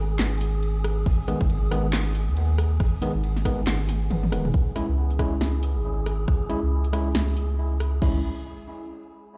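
A cavernous, heavy mix sounds as if played on a big sound system in a bare room, with a large studio reverb surrounding this short cut from a longer deep dubstep piece in C# minor at 138 BPM, its half-time feel carrying a 59% swing on the sixteenths. From the start, a soft, round dub sub bass sits up front with a fast attack and sustained tone, while an airy, breathy wind-like noise texture holds a dark G#4 with a slow attack and long release. A deep house drum kit joins at 0.2 seconds with a punchy snare, metallic hats, handclaps, rim clicks, toms, ride and crash, all overdriven and layered, and an overdriven electronic kick adds its deep thump from 1.1 seconds. A bright, gritty tine electric piano plays stabs through a combo amp from 1.3 seconds, softened by a low-pass filter and trailed by dub echo. The opening drop rests on G#m and ends in a drum fill, before the harmony moves to C#m at 4.5 seconds for the next section.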